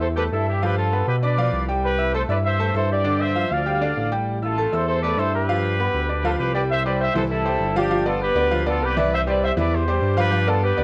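A punchy, tight horn section carries the melody from the start over a bright, brilliant piano with a worn edge and deep low end, both colored by cassette tape, while a mellow sawtooth-and-square synth bass with vibrato sits up front beneath them. This joyful, sunny salsa moves at 198 BPM in 4/4 and C major, shifting into a new section at 6.7 seconds where the harmony settles on C and G7. It's a short cut from a longer piece, with light studio reverb, home-cassette character and vinyl crackle over the whole recording.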